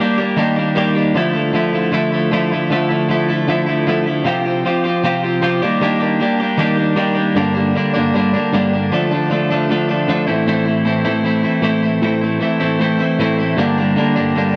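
Cool and restless, this rock excerpt moves at 155 BPM in a straight 4/4 in D minor, tuned slightly low to A4 = 439 Hz. A lone twelve-string electric guitar carries it from start to finish, clean, bright and twangy, with compressed picking set up front and an analog delay trailing its notes as it moves through Ebmaj7, Dmadd9 and Csus4 before shifting at 7.4 seconds to a run of Gm, Dm and Am. Light reverb and digital ambience surround a dry, gritty hardware sound.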